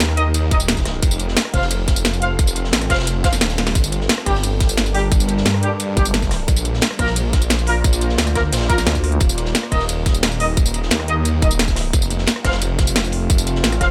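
This excerpt of dark technical drum and bass opens with a deep, moody ambient pad sustaining chords in the background, a snarling distorted saw bass growling up front with tube saturation and sidechain pumping, and two drum kits: a crunchy, gritty breakbeat kit with dark cymbals sitting behind a drum and bass kit whose cracking snare, metallic hats, rim click and tambourine sit forward. At 0.2 seconds a mellow, distant brass ensemble adds stabs with light vibrato and digital delay, and a tight electronic kick arrives at 0.5 seconds. The mood is tense and aggressive in a straight 4/4, with harmony moving from Eb and F through Gm and Bbadd9 before returning to Eb and F. The kick drops out briefly around a drum fill at 3.6 seconds. A nasal, resonant vowel-sweep wobble bass with chorus cuts in for short bursts and then holds from 11.4 seconds to the end, while a small room ambience surrounds the mix.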